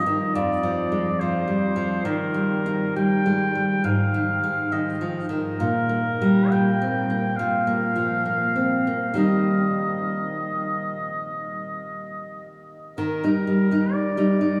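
Elegiac and solemn, this romantic duo for oboe and classical guitar moves with a rubato feel in 4/4 at roughly 61-72 BPM, set in Eb major. The oboe carries the melody from the start, its tone warm and lightly touched with vibrato, sounding distant and roomy even as it sits up front in a classical style. Beneath it, the nylon-string guitar provides fingerpicked accompaniment with a bright, fresh-stringed acoustic sound, reaching down into its low register to support the line. The harmony drifts from a diminished opening chord through Eb, Ab and a G minor colour before resting on Eb again around 9.2 seconds. A brief new section arrives at 13.0 seconds, and the whole duo is bathed in a wet cathedral reverb that places it in a vast, echoing space, a fragment cut from a longer piece.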